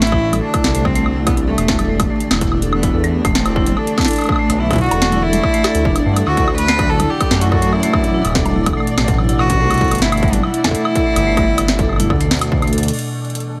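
Lightly reverberant, this glitchy, intricate IDM excerpt at 144 BPM sets a nasal, sul tasto cello melody with delay over icy, crystalline pad chords carrying chorus and vintage 12-bit sampler grit, ringing vibraphone arpeggios with motor vibrato and delay, a rumbling detuned saw bass, a booming, tape-warm analog drum machine of crisp snare, metallic hats, cabasa, crash, toms and woodblock, a distorted electronic kick, and a faint pulsing gated texture, all moving through Am7, E7(no3), D and C6 before a drum fill at 12.7 seconds.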